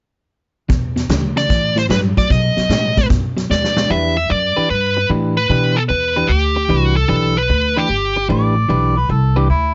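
A mournful, brooding electric blues shuffle at 150 BPM opens with a compressed, slightly broken-up picked guitar riff over thumpy, woody pizzicato upright bass and a punchy, natural-sounding big-band drum kit swinging in 4/4 through E5, A5 and B7. A dark, overdriven lead guitar takes the melody up front from 1.4 seconds, and the drums drop out after a fill from 3.5 seconds as the excerpt settles onto Em7 in E minor at 3.9 seconds. At 8.3 seconds a warm, roomy harmonica with light vibrato and tongue slaps enters as a second line in a jazz-style solo over the riff and bass, all in a dry, dark-toned mix.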